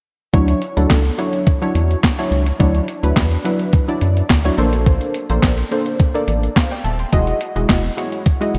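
A bright 1980s-style digital production bathed in lush hall reverb carries this danceable, feel-good early-eighties boogie funk excerpt at 106 BPM in D major, where a punchy, detuned sawtooth polysynth comp with chorus sits up front over a rubbery, hollow square-wave bass and a thumpy, overdriven 12-bit drum machine with handclaps, hi-hat and a medium-tuned snare, moving through Dmaj9, Bbmaj9 and Emaj9 chords.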